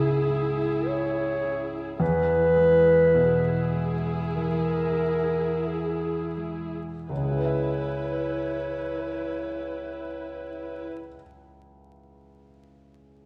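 A dark, up-front clarinet carries a second line through this moving, sorrowful cinematic film score in C# minor, played rubato at 41-54 BPM and slowing over the first 7.1 seconds, over an intimate grand piano with audible action noise and long sustain that rings on alone until 13.3 s, a smooth, vibrato-rich viola section and a mellow, fingerpicked harp in the background, bathed in a wet scoring-stage reverb with vinyl crackle.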